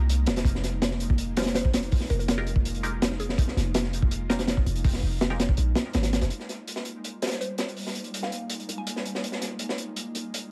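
Wrapped in studio reverb and vinyl crackle, this dark, atmospheric drum and bass excerpt in F minor at 164 BPM opens on an Fm11 drop, with a gritty, saturated breakbeat kit up front, a deep, boomy 808-style bass that drops out at 6.3 s, an ethereal pad holding airy chords beneath, a muted, phaser-tinged dub chord stab entering with dub echo at 1.4 s, and a woody, round mallet-like pluck sitting in the background between 1.4 and 3.6 s and again from 7.2 s.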